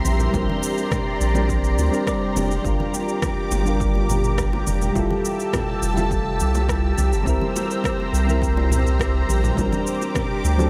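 A deep, round analog bass sits up front in this smooth, relaxed sunset chillout excerpt, entering at 0.1 s beneath mellow electric-piano-like synth keys with chorus and analog delay and a lush, detuned unison pad brightened by chorus and phaser. The chords move from Bb69 through Gm7, Fmaj9 and C7 back to Bb69. An overdriven electronic shaker and rim click, distant congas and bongos, and a punchy, overdriven electronic kick in the background that plays from 0.3 s to 10.3 s give it a straight groove, all soaked in a dreamy, huge ambient reverb.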